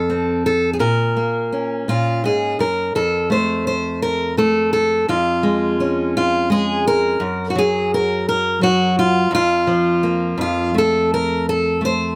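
Melancholic and intimate, this short folk passage for solo fingerpicked steel-string acoustic guitar is cut from a longer piece and flows in a lilting 6/8 with a straight feel. The guitar is the only voice from start to finish, sitting up front with a concert-like presence, its fresh strings giving each note a bright, clear edge while the body of the instrument sounds warm. Close, detailed miking brings out small touches such as finger squeak, and a light reverb adds a little air around the playing. The harmony begins on F and darkens quickly to B-flat minor, then a new section at 2.9 seconds returns to F before drifting to D-flat over F. At 7.2 seconds the harmony falls away from any defined chord, leading into a suspended F chord that resolves back to F at 10.4 seconds.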